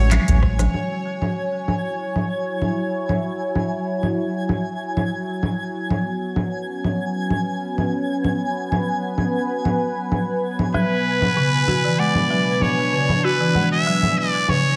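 Meditative and earthy, this organic downtempo excerpt at 96 BPM rides a warm, detuned analog pad with chorus and sidechain pumping beneath a twinkling granular shimmer and smooth-hatted organic electronic drums of congas, handclaps, shaker and rim click, after a brief opening accent where a round, deep analog bass and a soft electronic kick drop out by 0.7 seconds, until a nasal, raspy muted trumpet with digital delay and a woody, rustic marimba with tape echo return at 10.7 seconds over chords moving from Amaj7 through F#sus2 and C#7sus4 to E7/B.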